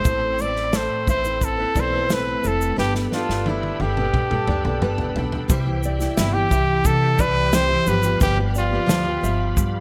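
Sunny and easy-going, this acoustic pop excerpt moves at 88 BPM in a straight 4/4 in C major, cut from a longer piece. A close-miked trumpet sits up front with the melody, its warm pop-style tone carrying a light vibrato and digital delay. Underneath, a double-tracked, full-bodied jumbo steel-string guitar is picked for accompaniment, while a nylon-string guitar in the background plays thumb-plucked arpeggios with audible finger squeak and its own delay. A reedy, lightly overdriven tonewheel organ holds sustained chords in the background, with key click, chorus vibrato and a fast rotary speaker, and a woody, thumpy pizzicato upright bass anchors the low end. The airy, polished country drum kit brings a punchy kick, medium-tuned snare, shaker and toms, with a fill from 2.8 to 5.5 seconds leading into the second section as the chords move from Amadd9 and Gadd9 to C and G7, all in a light reverb.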